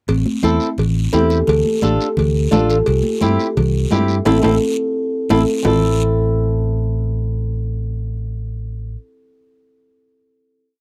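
A fiery, danceable cumbia opens with a round, dark electric bass playing a cumbia figure up front, a woody kalimba with a hollow-box ring adding answering phrases, ringing cowbell and timbales in the background, and a raspy guiro. Thick-skinned, high-tuned congas join in the background at 0.3 s on off-beat hand drums, and a fingerpicked flamenco guitar with fresh strings and audible finger squeak enters up front at 0.4 s with rhythmic triad chords. After a drum fill and band accent, the percussion stops at 5.7 s, leaving guitar, bass and kalimba to hold a final chord in this dry, close 1970s-style studio sound.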